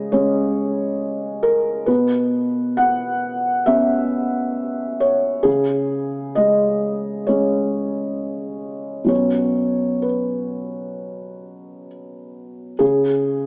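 Hopeful and tender, this brief excerpt from a longer piece is neoclassical minimalist piano in B major, moving at 66 BPM in 4/4 with a loose, rubato feel. A single felt-muted upright piano carries everything alone from 0.0 to 13.5 s, ranging from B2 up to F#5. Its tone is soft, mellow and intimate, sitting up front with a natural character. The harmony simply alternates between a C#5 chord and Bsus2, returning to C#5 at 12.8 s, giving the passage a gently suspended, open quality. A moderate concert hall reverb surrounds the piano, though the overall sound has the character of a small speaker.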